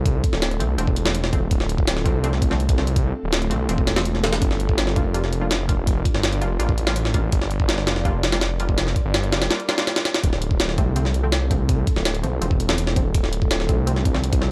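A gritty, compressed jungle sampler-style drum kit sits up front, with a thumpy kick, a high-tuned, pitched-up snare and hi-hat carrying a tape-warm edge at 165 BPM. A thick, detuned saw bass, saturated and menacing with a beating tone, drives this dark, raw drum and bass cut in D minor, moving from Dm7 to Gm7 and back. In the background, a muted, deep dub chord stab enters at 0.6 seconds with a filter sweep, chorus and dub echo, all within a dry digital ambience on a gritty hardware recording.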